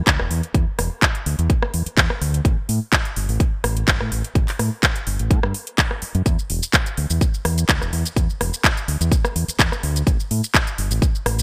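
Bright, 1980s-style digital production with light reverb frames this groovy, funky filtered disco house excerpt at 126 BPM in straight 4/4, where a punchy, tape-warm electronic kick sits up front beside a layered house kit of handclaps, metallic hi-hats, rim click and shaker, while a dark, round fingered electric bass with tube saturation and sidechain pumping moves through a low-pass filter sweep from start to finish.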